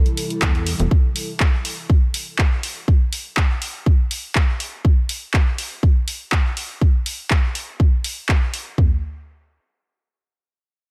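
Dry and close, this cut from a longer progressive house track keeps its sounds up front, with little room around them, and carries an emotional, dreamy mood in a straight four-beat pulse. It opens on a C chord from an airy, breathy pad, soft and mellow, built from detuned triangle and sawtooth tones with a noise layer, a moving notch and a chorus sheen, pumping against the sidechain. Beneath it, a tight sequencer bass of sawtooth and square waves with ring modulation gives a punchy, driving filter pluck with a fast attack. Both pad and bass drop out at 0.9 s, leaving the electronic house drum kit to carry the music. Layered handclaps and hi-hat run from 0.1 s, joined by a punchy kick and toms from 0.4 s, the kick and toms standing loudest in the mix until the drums fall away near 8.9 s as a new section begins.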